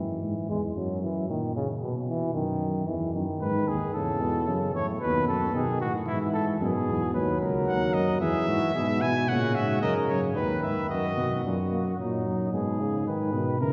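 Heard from far back in a resonant church, this joyful, lively classical brass canzona in E major moves at 112 BPM, with a warm, lightly vibrato euphonium and a mellow, smooth-topped tuba laying down the accompaniment and bass from the start, a soft-attacked trumpet with vibrato entering on a second line at 3.4 seconds, and a clear, lightly vibrato trumpet carrying the melody from 7.7 to 11.4 seconds as the harmony turns toward minor chords near the close of this fragment of a longer piece.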